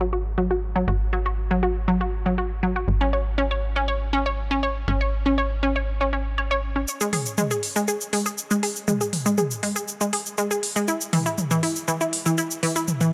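Melodic techno at 120 BPM in a straight 4/4, dark and melancholic, in a short excerpt cut from a longer piece. A detuned, warbling unison pluck plays arpeggios across the whole 13.1 seconds, ranging from E3 to C#5 with digital delay, while a filter sweep moves over its sound in the opening stretch. Beneath it, a tight, nasal sawtooth-and-square sequencer bass drives on G#1 under chords of F#sus2/G# and then C#5/G#, stopping at 6.9 seconds. At that point the harmony drops away and an overdriven electronic drum kit enters with smooth hats, shaker and toms for a build-up to the end. The parts sit up front in a light reverb.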